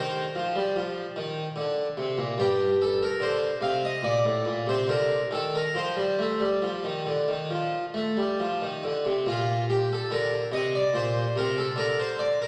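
A solo harpsichord opens this short passage cut from a longer piece, a baroque-style suite movement in B-flat major with a serene, dance-like character. The tempo sits around 67-74 BPM in 4/4, though the playing breathes freely with rubato. The instrument is a French-style harpsichord with three sets of strings, and its plucked tone sounds airy, full and brilliant, placed up front in the mix across a range from G2 to F5. A wet concert hall reverb with a 2.2-second decay surrounds it, lending a spacious glow to each note. The harmony moves from C minor through F and G minor back to F before settling on a B-flat major ninth chord at 9.3 seconds, where the opening material returns and carries on to the close at 12.5 seconds.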